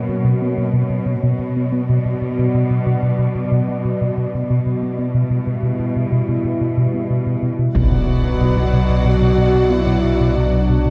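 In a straight 5/4 pulse, this futuristic, relentless cut from a hybrid orchestral and electronic film score builds over a moody, warbling ambient pad with chorus, a round analog bass riff and lush bowed cellos, until around 7.7 seconds a huge impact, a rumbling detuned saw bass, very quiet compressed taiko, distant clear violins, background violas and roomy French horns arrive within a moderate scoring-stage reverb.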